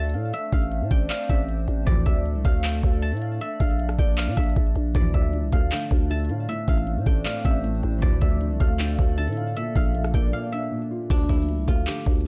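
A bright, silvery guzheng played with fingerpicks carries the melody through this eerie, brooding trap excerpt, its ringing tone softened by a low-pass filter. Beneath it, a knocking trap kit with crisp hats, handclaps, rim clicks and crash cymbal sits up front in a half-time feel at 156 BPM in D minor, joined by a growling, buzzy 808-style bass. A velvety synth lead with chorus and delay and a warbling, lo-fi tape-like pad hover in the background, while brief, lush stabs from a bowed symphonic string section surface at a very low level. A felt-muted upright piano, mellow and boxy, enters at 4.9 seconds, and a short break arrives at 10.3 seconds before the lead and pad drop out and a new section begins at 11.1 seconds on a Dmadd9 chord. The dark, warm production keeps the sound dry.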